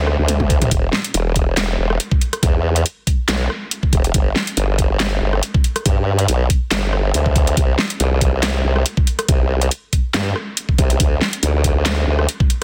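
A swung, half-time 4/4 groove at 140 BPM drives this chaotic, menacing slice of heavy wobble dubstep, cut from a longer piece, where a sawtooth-and-sine formant-filtered wobble bass, sweeping between E1 and G2 with chorus and overdrive, is joined by an up-front dubstep kit of huge snare, metallic hats, handclaps, rim clicks and toms that slips in a brief fill at 0.3 seconds, as a knocking, tape-warm electronic kick lands at 0.4 seconds, all set dry in a dense, heavily limited modern master.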